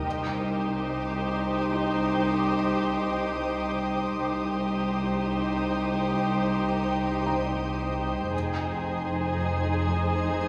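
Muted viola and cello sections sit closest and fullest in this tense, ominous suspense film cue: the violas hold a soft-attacked Eb4 while the cellos carry the bass between C2 and F2, joined below by a double bass section. At a slow 58 BPM in 4/4, three con sordino violin lines fill out the strings. A veiled melody sits on C5, a second line between G4 and Ab4 stays in the background, and a distant high texture around C6 to Eb6 drops out at 7.8 s. Every string part is dark and bowed with vibrato. Above them, a shimmering ambient pad sustains ethereal, detuned chords with a slow attack, octave-up shimmer, chorus and its own reverb, while a felt-muted upright piano adds an intimate background texture whose short sustain carries audible action noise. The harmony rests on C minor before shifting to Fm7 at 8.3 s, and a wet scoring-stage reverb wraps the ensemble.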